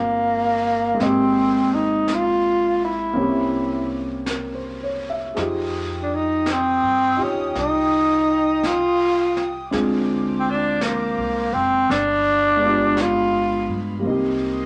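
A slow, swung 4/4 pulse carries this romantic, tender jazz ballad, cut from a longer piece. A breathy, growling tenor saxophone sings the melody up front with subtone, vibrato, scooped notes and a raspy edge, over natural-sounding baby grand piano chords and a woody, thumpy pizzicato upright bass. Brushes on a high-tuned snare and hi-hat join at 1.0 s, and a bowed string section with a reedy, gut-string tone enters in the background at 5.4 s, all set in a wet club reverb before the saxophone drops out at 13.9 s.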